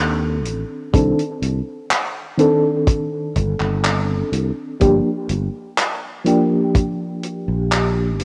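Vaporwave at a slow 62 BPM in straight 4/4, this brief excerpt in C dorian feels melancholic and woozy, moving from Cm69 to Gm7 at 4.8 seconds. A mellow FM electric piano carries the harmony from the start, its soft, round tone warbling through tremolo, subtle chorus and analog delay, with a dark, vintage color, a faint noise layer and notes that strike quickly and then decay. Underneath, a sustaining fretless electric bass sits up front with a growly, punchy character in its low register. A soul drum kit of handclaps and hi-hat joins at 0.5 seconds, dry and mid-forward with a rolled-off top, and a tight acoustic kick arrives at 0.9 seconds as the most prominent element of the mix. The whole excerpt has the rough feel of a home demo dubbed to cassette tape, touched with light studio reverb.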